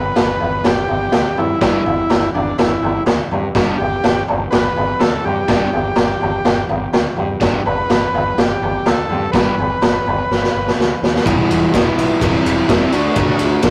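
A crunchy, double-tracked overdriven guitar riff enters at 1.6 s over a boomy, gritty garage drum kit, a dark, round fuzz bass and a buzzy combo organ melody with light vibrato and tape echo that drops out at 10.7 s, giving this swaggering, raw 125 BPM garage rock excerpt a rough rehearsal-room sound as a drum fill carries the vamp on G into a closing Em, C/E, D passage at 11.3 s.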